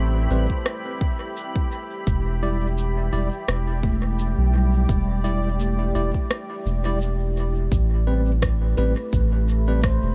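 Ambient dub with a spacious, meditative mood, where a deep, detuned sawtooth pad holds sustained chords under ringing handpan arpeggios with tape echo, a round sub bass sits up front, a barky, slightly out-of-tune electric piano fires overdriven stabs through dub echo, and an overdriven electronic shaker and rim click ride a layered, tape-warm kick through a break from 6.3 to 7.7 seconds.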